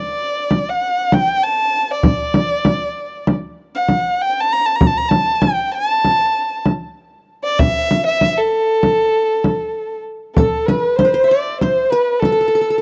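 In a straight 9/8 at 194 BPM counted in eighths, this stately, festive Turkish makam ensemble piece in A hicaz, tuned to A4 = 441 Hz, opens with a single bowed violin playing the melody up front in a dark, woody voice with a smooth top, shaded by vibrato and sul tasto bowing. A deep, large frame drum joins close and up front at 0.5 seconds, and at 10.4 seconds a softer, bright-edged, plectrum-plucked qanun with triple strings enters as a second line. The sound is a dry, close 1970s-style studio recording, cut from a longer piece.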